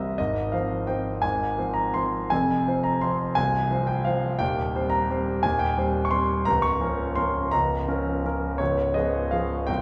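A clear, polished concert grand piano plays a solo classical waltz in F minor at 170 BPM in 3/4, with uneven beats and rubato giving it an elegant, bittersweet sway. The intimate piano sits present and up front, with deep bass and audible action noise, while a wet recital-hall reverb, heard from further back in the room, surrounds it. Over these 9.8 seconds cut from a longer piece, the harmony moves from Fm/Ab through Fm, Cm/Eb and Bbm/Db to a Db7 chord at 8.6 seconds.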